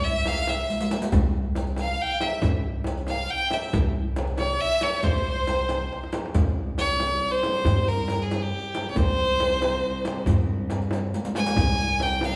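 A bright, intense solo violin with vibrato carries the melody up front in this festive, stately Persian modal ensemble excerpt in 6/8, while a lush, distant violin section bows a second line in the background until 6.1 seconds and a rich, focused cello drone enters at 6.4 seconds. Underneath, a woody, thumpy pizzicato upright bass holds the low end, and the percussion comes from a frame drum played with hard hands, a tight tombak set back in the mix, and a riq with dark, saturated jingles, with short drum fills arriving around 0.7, 5.9 and 11.1 seconds. The band plays live in one room, bathed in wet, large-studio reverb.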